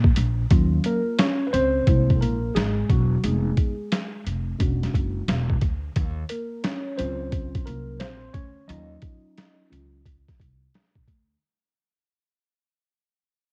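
A worn, slightly out-of-tune tine electric piano takes a solo from 0.5 to 10.0 seconds, its phaser and cassette-tape coloring giving this mellow, nocturnal jazz-hop clip its character over chords moving from Ebm9 through Caug7, Fm7b5 and E13. Beneath it, a gritty, pitched-down boom bap sampler-style drum kit with a thumpy kick and medium-tuned snare swings on its sixteenths alongside a woody pizzicato upright bass on gut strings. The whole passage sits in a digital ambience on a homespun cassette recording and fades out from 0.5 seconds, cut from a longer piece.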